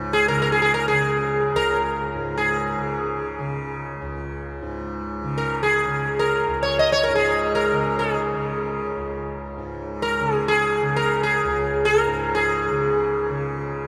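Hindustani classical music with a longing, meditative mood, heard as a short fragment of a longer performance. A bright, softly plucked tanpura sustains a low, shimmering drone throughout, while the sitar enters at 0.1 seconds up front with a round, plectrum-plucked melody, its buzzing tone haloed by sympathetic strings. The whole recording sits in a vast, echoing space, with a cathedral-like reverb trailing long after each note.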